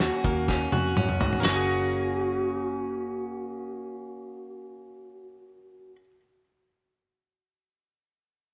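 A straight 4/4 pulse drives this bright, youthful snippet of jangly indie pop, where a loose acoustic drum kit with a fat snare and punchy kick plays a fill from 0.5 to 1.4 seconds before dropping out at 1.6 seconds, leaving an up-front, clean, compressed twelve-string electric guitar on arpeggios, a slightly broken-up lead guitar playing its melody on F#4 with tape echo, and a round, foam-muted picked bass underneath, all moving from D#m7 to F#add9 in a small room with echo chamber reverb.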